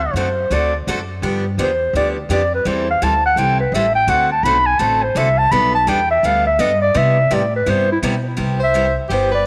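A swung 4/4 pulse drives this playful acoustic string swing, with a thumpy, woody pizzicato upright bass and a boxy, bright picked steel-string guitar carrying the chords underneath. Up front, a breathy clarinet takes a mellow jazz solo full of subtone, vibrato and scooped notes, its sound trailed by tape echo, until a new section begins at 8.4 seconds. A clear, close-miked soprano saxophone enters at 8.6 seconds with a short second line, and a moderate echo chamber and small room reverb give the group a roomy glow.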